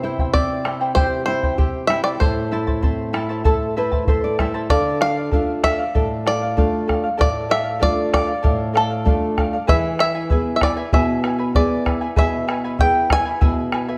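A twangy, percussive bluegrass banjo carries the melody from the start, played with fingerpicks over a shimmering, double-strung charango and a deep, fingerpicked nylon-string guitar, as a round bombo enters at 0.2 seconds in this melancholic, earthy Andean folk piece at a steady 96 BPM in 4/4. The harmony moves from C to Am, and a guitar fill at 3.5 seconds leads into a second section at 4.7 seconds that settles on Dm before turning to E. The banjo, guitar and bombo sit up front, with a moderate recital-hall reverb giving the ensemble a natural sense of space.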